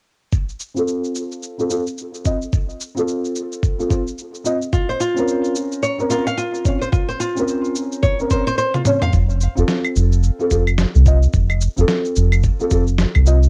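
Organic downtempo at 109 BPM with a 16th-note swing, warm and meditative, built on a gritty, overdriven sampler-style soul kit of claves, shaker, snare and toms over a thumpy electronic kick, while a felt-muted upright piano with audible action noise and a boxy, intimate tone pumps under a filter sweep through cassette tape, tape echo and plate reverb, a small fingerpicked nylon-string guitar adds arpeggios from 4.7 to 9.1 seconds over a move from F to Bbmadd9, and after a drum fill a round, deep analog bass enters at 9.1 seconds as the harmony returns to F.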